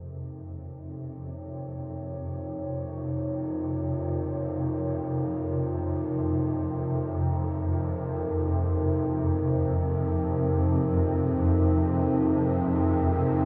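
A swarming drone sits up front from the very start, its detuned sine and sawtooth voices in unison, roughened by ring modulation and given a granular, evolving texture with its own built-in reverb. Above it, a deep analog pad enters at 0.2 seconds with slow-attack sustained chords, its sawtooth and triangle tones thickened by a sub octave and colored with chorus and phaser. Both parts fade in across this ambient passage, which is cut from a longer piece, building an ominous, vast atmosphere. The harmony shifts from Bbm to Fm7 at 8.7 seconds, deepening the moody, tense character. A wet echo-chamber reverb and an echo-heavy mix leave long tails hanging in the air.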